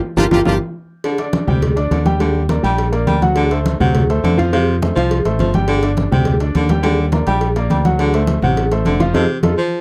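Fiery and driving, this cut from a longer salsa piece in G minor races along at 207 BPM in a straight 4/4, opening with a punchy, brilliant horn section stating a short melodic burst over a band accent. A clear, polished baby grand piano joins a dark, round fingered electric bass that sits up front, while low-tuned congas with a thick skin and tight, high-tuned bongos and cowbell heard from a distant, large room push the groove through changes on Ebmaj7, D7 and F. At 1.0 s a roomy baritone saxophone with vibrato enters as a second line, carrying on through another band accent near 9.1 s, all captured in a dry, close 1970s-style studio sound with light reverb.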